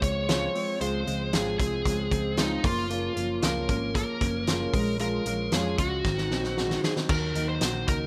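A biting, overdriven lead guitar carries the melody up front from the first beat, over a full-bodied fingerpicked steel-string acoustic tucked in the background, a mellow, phaser-tinged electric guitar playing compressed arpeggios, a round, punchy hollow-body bass and a loose, gritty indie drum kit with a fat snare, making a breezy, bright jangly indie pop passage with light reverb and a rough home-demo feel that moves through Dbmaj7, Gbmaj7, Bbm7 and Ab7 before a drum fill at 6.0 seconds leads into Ebm.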